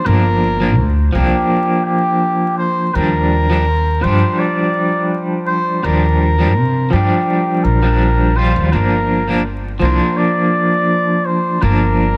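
Trip hop with a smoky, cinematic mood, this piece cut from a longer work sets a veiled, cup-muted trumpet melody with tape echo over a twangy, slightly broken-up electric guitar carrying tremolo and tape echo and a woody pizzicato upright bass, all in a small room with vinyl crackle as the chords move from Gm7 to Ebmaj7 at 2.9 seconds and back at 8.7 seconds.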